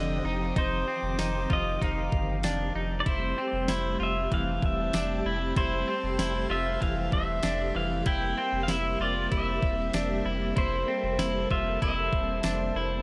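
A crisp, overdriven 8-bit drum machine with a thumpy kick, medium-tuned snare, ride cymbal and tambourine enters at 0.6 s beneath a floating, dreamy dream-pop excerpt at 96 BPM in F major, where a clean pedal steel guitar plays the melody with fingerpicks, slide and volume swells through delay, over a clean semi-hollow electric guitar's arpeggios in lush chorus and delay, shimmering vintage string-machine violin chords with ensemble chorus, a round, dark analog bass and a glassy background texture of drifting overtones, all moving through Eb69/F, Fmaj9 and C7 in a light digital ambience.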